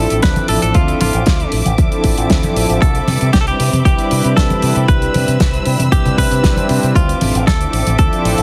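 Nu-disco at 116 BPM in D dorian, sleek and sensual, moving in a straight 4/4 from Dm9 to Cmaj9 and back to Dm9 in this short section cut from a longer piece. A twangy, clean electric guitar carries the melody with a picked, compressed tone and tape echo, over a smooth sawtooth analog pad with soft attack and chorus. A dark, woody string section holds lush bowed chords with vibrato, and a bright, punchy fingered electric bass with an envelope filter anchors the low end, the pad, strings and bass all pumping against the kick through sidechain. A dry, damped 70s kit enters at 0.1 seconds, its fat snare and hi-hat sitting in studio reverb, and the punchy, layered electronic kick follows at 0.2 seconds, while thick-skinned congas add texture in the background. The whole mix has a small-room feel and a heavily compressed, radio-style sound.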